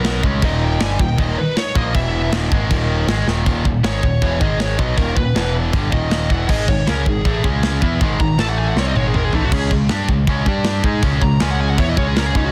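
Heavy metal in Eb phrygian dominant at 158 BPM in a straight 4/4, relentless and aggressive, cut from a longer piece. A rich, very quiet symphonic string section holds smooth bowed chords with vibrato for the opening 3.4 seconds, beneath a dark, high-gain lead guitar that carries the melody through distortion and delay. Two bright, tight distorted guitars drive the riff, one set back in the background, while a growling overdriven picked bass anchors the low end with a direct, amped bite. The tight metal drum kit sits up front with a mid-forward, rolled-off sound, a medium-tuned snare and tight kick, and its china, crash and splash cymbals and toms add punch, with fills at 3.3 seconds and again at 8.8 to 9.5 seconds. From 3.5 seconds the lead guitar launches into a solo over power-chord shifts such as Eb5, Ab5, Db5 and A5, all in a small room ambience with a dense, heavily limited modern master.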